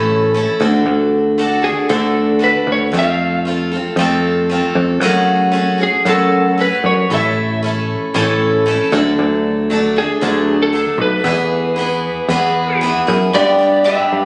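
A boxy, up-front picked steel-string acoustic guitar and a growly, punchy electric bass open this hopeful folk rock and heartland rock fragment, joined at 1.6 seconds by a slightly broken-up, compressed electric slide guitar that carries the melody through a slapback echo, while a woody, slightly detuned upright piano slips in faintly in the background at 13.4 seconds, all captured on a phone in a room with light reverb and a dulled top end as the chords move from A through D, F and F#madd9 toward E and G.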